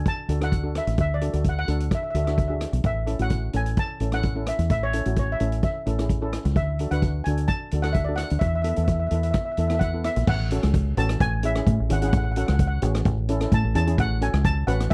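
This dry, close recording has a 1970s studio character with little reverb, cut from a longer calypso piece in A major at 129 BPM in straight 4/4, with a bouncy, sunny mood. A lead steel pan played with medium rubber sticks carries the melody between C#5 and A5 in a metallic, shimmering voice. A set of double seconds struck with soft rubber sticks supplies mellow, soft, vintage-sounding accompaniment, band-limited and set back beneath the lead. Up front sits a deep dub fingered electric bass, round, foam-muted and heard direct and amped, the strongest part in the mix. The street-band drum kit enters at 0.1 seconds, an acoustic small-room kit of boomy kick, rim click, hi-hat and crash with dark cymbals, mid-forward and rolled off at the top. The harmony moves through D, A and Esus4 before a second section at 10.3 seconds alternates F#m/A and C#m/A around A.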